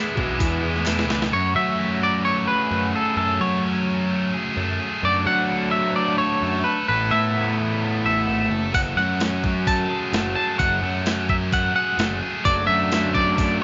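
A clear mix with light reverb and digital ambience, its top end stopping short of 7.6 kHz, frames this upbeat, carefree indie rock excerpt at 129 BPM in 4/4. A sparkling tine electric piano with phaser and a soft, flute-like tonewheel organ on slow rotary speaker sound only in the brief opening, where a thumpy, sampler-style 12-bit drum machine plays a fill joined by a faint group handclap. Throughout, a raw overdriven garage guitar with analog chorus and tape echo, a scooped high-gain distorted guitar and a round, fuzzy picked bass drive the riff, while a twangy, up-front clean guitar with tremolo carries the melody from 1.3 seconds over F#madd9, D/F# and Asus2, and the drums return at 8.7 seconds.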